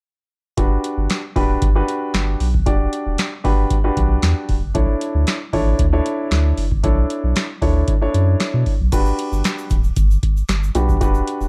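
A booming analog drum machine drives this late-night, danceable slice of early-eighties boogie funk at 115 BPM in E dorian, its deep kick, crisp snare, handclaps, metallic hats and crash sitting up front with a short room on the snare, clap and hats. A round, sine-like sub bass with a fast attack and sustained notes holds down the low end beneath an up-front grand piano, moving from Em7 to Bm11 at 4.8 seconds and back to Em7. At 8.9 seconds a grainy, bright egg shaker slips in at the back of this dry, dark-toned mix.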